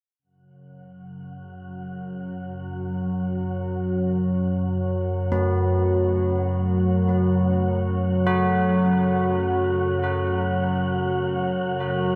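Dark ambient drone in free time, this cavernous, unsettling passage is cut from a longer piece and tuned to A4 = 436 Hz, sitting on an F#5 chord. A sweeping resonant pad opens at 0.2 s with very quiet, airy, detuned sawtooth chords that evolve under a filter swell and chorus. From 0.8 s, a breathy, wind-like tuned noise texture hovers high and mellow, fading in beneath lush chorus and its own reverb. An organ-like drone arrives up front at 1.0 s, holding calm sine unisons in the low register, colored by ensemble chorus, a phaser and built-in reverb. At 5.3 s, close-miked carillon bells break in with bronze, ringing arpeggios, their bright, dry strikes from a worn iron clapper carrying a minor-third overtone and trailing delay. The dreamy mix is soaked in a huge ambient reverb with a long decay, giving the whole passage a vast, hollow depth.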